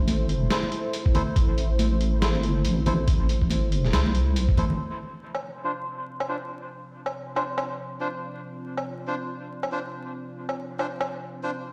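Cavernous and meditative, this deep dubstep excerpt in a half-time, swung 4/4 opens on a moody, detuned analog pad with 12-bit grit and a deep, wobbling bass up front, while muffled, pitched-down sampler drums with hi-hat, snare and woodblock, hard-handed high-tuned congas and a thumpy kick from 1.1 seconds join reedy, breathy melodica stabs with dub echo, before the bass, congas and kick stop near 4.8 seconds and filter sweeps on the melodica and pad carry the rest over the continuing sampler drums, all set in a stone-walled hall with vinyl crackle.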